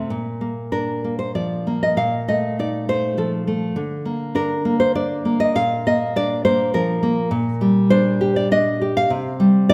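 Bathed in a lush recital-hall reverb, this short, passionate and intimate romantic excerpt for solo classical guitar unfolds in a rubato 3/4 at about 100 BPM in Bb major, its full-bodied, fingerpicked nylon strings sitting up front as the harmony moves from Bb through F7/Bb and Gm/Bb before reaching C5 at 9.1 seconds.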